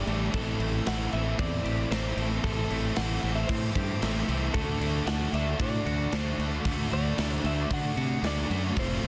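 A dense, heavily limited modern master in a small room sets this brief 9.1-second excerpt of wistful, dreamy shoegaze-tinged rock and dream pop, moving at 114 BPM in a straight 4/4 over Am7 giving way to D at 4.5 seconds. A compressed, direct-recorded clean electric guitar carries the melody from A4 to F#5 through digital delay, while a twangy second electric guitar plays picked arpeggios in the background, coloured by analog chorus and digital delay. Two warm, crunchy overdriven guitars sit further back with picked riffs, one bathed in lush chorus and the other trailing reverse reverb. From 0.1 seconds a growly, fingered electric bass stands up front, reaching down to F1. Alongside it, a big acoustic rock kit sounds in a large room, with a punchy kick, medium-tuned snare and bright crash cymbals.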